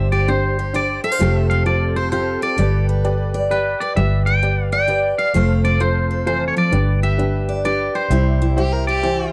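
Dry and close, this short cut from a longer honky-tonk and classic country tune has the feel of a 1970s studio session. It moves in an easygoing, heartfelt triple time with a gentle swing. A twangy, clean electric guitar carries the melody up front, while a detuned, jangly upright piano and a bright, full-bodied picked dreadnought acoustic guitar fill in the accompaniment. Underneath, a foam-muted fingered electric bass sounds dark, round and punchy, sitting prominently in the mix. At 8.6 seconds a bowed fiddle slips in with a second line, clear and biting with light vibrato and a smooth top, shortly after the chords settle on C.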